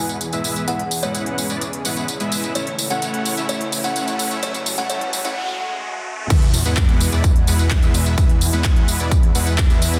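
Triumphant and anthemic, this festival progressive house passage at 128 BPM sets a woody, thumbnail-plucked kalimba melody with digital delay over a lush pad treated with chorus and phaser, a huge filtered supersaw riff and a thick detuned saw bass, the last three pumping with sidechain, while a big-room kit with crisp hats, handclaps and tambourine drives a build-up past a background riser, noise sweep and sub drop, a break at 5.4 s and a drop at 6.3 s where a punchy, up-front electronic kick arrives, all in a dense, heavily limited master with moderate stage reverb.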